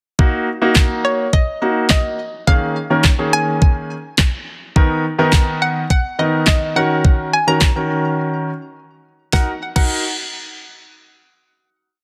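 Opening at 0.2 s with clear, polished baby grand piano chords pumping in close voicings over an electronic R&B drum kit's knocking kick, fat snare layered with handclaps, and crash cymbal in a four-on-the-floor beat, this bittersweet, energetic dance-pop piece in Eb minor at 105 BPM brings in a hollow, bouncy square-wave pluck with chorus, digital delay and an evolving filter sweep playing motif-based call phrases at 1.0 s, passes through a brief break at 8.2 s, and lands on a final Eb minor chord, all within a dense, heavily limited modern master with light reverb.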